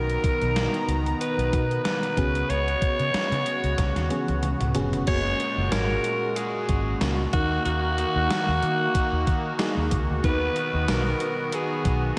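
A glossy, romantic slice of 1980s-style pop, cut from a longer piece, moves at an unhurried pace with a light swing and a dreamy mix soaked in lush hall reverb. A raspy, gritty alto saxophone carries the melody up front, trailed by a diffuse ambient delay. Beneath it, an FM electric piano layered with a soft pad adds mellow, detuned shimmer through chorus and tremolo, while a brassy, nasal analog pad holds sustained chords with chorus and vibrato. A dark, round, foam-muted fingered electric bass anchors the low end, and a gated 80s digital drum machine sits up front with a thumpy kick, a gated reverb snare, hi-hat, tambourine, toms and crash, playing a fill from 3.8 to 5.1 seconds. At 5.1 seconds a very quiet, biting overdriven guitar, double-tracked and picked, joins as the harmony moves into a new section.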